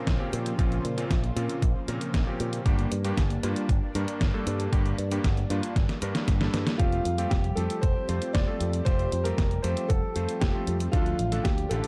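A dark, warm mix with light digital ambience frames this romantic, danceable italo disco passage, cut from a longer piece. A thumpy electronic kick sits up front beside a detuned 8-bit drum machine's hi-hat and snare, while a punchy picked bass with an envelope filter and tube saturation drives under clangy, delayed electric grand piano stabs and a lush, thick sawtooth pad with chorus and phaser glowing in the background. After a drum fill at 5.8 seconds, an intimate, boxy grand piano with audible action noise and delay takes up the melody at 6.8 seconds, as the harmony moves from Bbmadd9 and Gm to Fadd9 and Dm.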